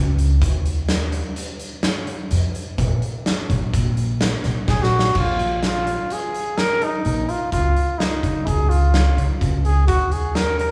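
A straight-feeling 5/4 groove at 127 BPM drives this brooding, tense progressive instrumental excerpt in Bb minor. A pizzicato upright bass opens the piece with a woody, thumpy tone from gut strings, and an oversized, low-tuned acoustic drum kit enters just after. The kit sits up front in a big, pumping room, with a boomy kick, a medium-tuned snare, dark cymbals and a gritty, saturated edge across kick, snare, hi-hat and crash. A drum fill at 4.7 seconds coincides with the entrance of a mellow, close-miked trumpet, which plays a solo jazz-style melody up front with scooped notes as the second section begins at 5.2 seconds. The harmony moves from a chordless opening through Bb5, Dbsus2 and a rootless Cm7b5, all set in a recital-hall reverb that gives a churchlike resonance.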